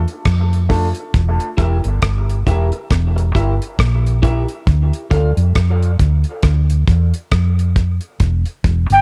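A dark, round hollow-body bass sits up front from the start of this deep, hypnotic dub reggae excerpt, joined almost at once by a dry, damped 70s drum kit with a tight kick, rim clicks and swung hi-hat. A woody upright piano stab at 0.7 seconds trails off in dub echo, and a slightly broken-up, compressed electric guitar adds chorused, echoing accompaniment from 1.6 seconds over the Edim and Dm chords. Just as the clip ends, at 8.9 seconds, a breathy jazz flute enters with a bright, chiffy note in the small, echo-heavy room.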